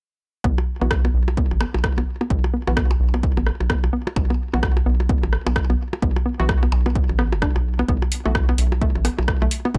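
Minimal techno at 129 BPM with a 16th-note swing, clinical and quirky in mood. This short cut from a longer piece starts at 0.4 seconds with a tape-warm, punchy electronic kick sitting up front and a rubbery, nasal square bass pumping against it. A hollow, detuned square pluck riff with chorus and dub echo rides alongside them, while delayed percussion blips, an analog drum machine's hi-hat and rim click, and a muted, evolving dub chord stab tucked in the background fill out the dry, close mix until around 9.8 seconds.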